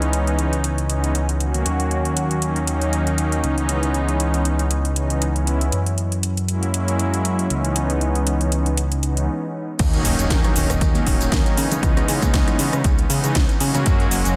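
A dense, heavily limited modern mix with a light reverb opens this groovy, sleek nu-disco excerpt, set in C# dorian at 118 BPM in 4/4 with a 55% swing on the sixteenths. A smooth, warbling vintage pad sits up front from the start, its detuned sawtooth and triangle tones softened by chorus, tape echo and sidechain pumping as it sustains chords that move from C#m7 to D#m7 and on to F#9. Beneath it, a fat, nasal analog bass with a saturated, fast-attack edge holds down the low end, while an overdriven house kit re-recorded in a large room supplies a cracking snare, metallic hats, rim click, shaker and crash. After a stop from 9.3 seconds, the drop lands at 9.8 seconds, bringing in a punchy, overdriven electronic kick alongside bright, distant maracas and congas in the background. A very quiet electronic impact marks the arrival, and the passage ends on an F#add9 chord as the piece carries on.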